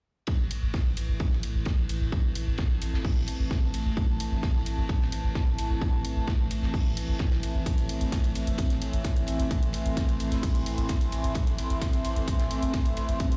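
A heavy, up-front electronic kick drives this intense peak-time techno cut at 130 BPM in A minor, joined by tape-toned electronic hi-hats and a muffled, gritty, cloth-damped acoustic kit with dark cymbals and a fat snare. Beneath them, a thick, saturated triangle sub bass holds A1 and a warbling vintage analog drone of sawtooth and pulse waves evolves, both pumping against the kick. At 2.2 s a deep, moody, detuned pad with chorus and its own reverb enters, and the whole mix rings with the bare stone-room sound of a big system.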